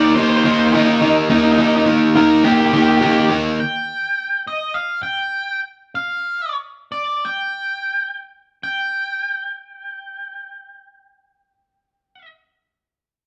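A band playing live in one room fills a large studio with moderate reverb, giving this melancholic, cinematic rock fragment, cut from a longer piece, a spacious, roomy glow. In straight 4/4 somewhere between 83 and 105 BPM, it opens on an Eb chord, with an overdriven semi-hollow guitar, double-tracked and up front, picking a hollow-body riff in the low-middle register that carries a warm tone. Over it, an octave-fuzz lead guitar, dark and distorted, picks a melody that ranges from Eb4 up to G5. At 3.6 seconds the riff stops and the harmony falls away, leaving the fuzz lead to sing alone as the tempo slows until 8.6 seconds. The lead carries on by itself to 12.3 seconds, its brooding tone hanging in the reverberant space.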